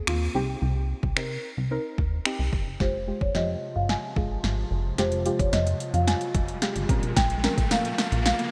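Bright 1980s-style digital production with light reverb frames this energetic, driving dance-pop excerpt in F minor at 110 BPM, where an up-front, overdriven deep house kit with a deep kick, punchy snare, metallic hats and finger snaps in gated reverb drives a punchy, funky plucky analog bass and a soft, nasal chord stab that both pump to the sidechain, until a build-up with a drum fill and filter sweep begins at 2.8 seconds as a woody soft-mallet marimba melody with delay enters, followed shortly by a glassy, ethereal FM pad, an electronic riser at 5.2 seconds and a very quiet, jingly tambourine at 7.2 seconds.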